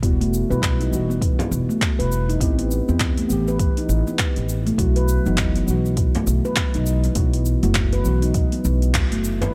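Organic downtempo at 101 BPM in 4/4, this short cut from a longer piece has a warm, earthy mood, with a 16th-note swing giving it a gentle lilt as the harmony moves from Emadd9 to Am7 to Bsus4. A woody, thumpy upright bass sits up front alongside a deep electronic kick, while a produced deep house kit adds cabasa, handclaps and metallic hi-hats. Muted, felt-like synth keys supply intimate, warbling chords coloured by chorus, vintage 12-bit sampler grit, sidechain pumping and tape echo. From 0.2 seconds a ringing, meditative handpan traces arpeggios through a low-pass filter and tape echo, its tone mellow and dark. A saturated frame drum struck with hard hands taps briefly near 1.4 seconds, returns at 6.2 seconds, and the band lands a shared accent at 8.9 seconds, all held in a small room ambience.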